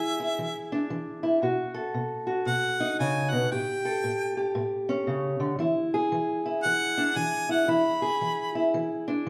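A large, reverberant studio room gives this short live take of acoustic country blues a wet, spacious sound, with both players close at hand and up front. At a laid-back 115 BPM in 4/4 with a swung eighth-note feel, the music sits in E mixolydian and has a gritty, unhurried mood. A close-miked harmonica carries the melody between E5 and B5, its clear tone shaped by vibrato and scooped notes in a jazz-tinged manner. Beneath it, a fingerpicked steel-string parlour guitar supplies the accompaniment from A2 to A4, sounding dark, woody and boxy with the dull edge of old strings. The chords move from E7 to B7 at 1.4 seconds, then to A7 and back to E7, and the harmonica drops out at 8.7 seconds while the guitar rings on to 9.3 seconds.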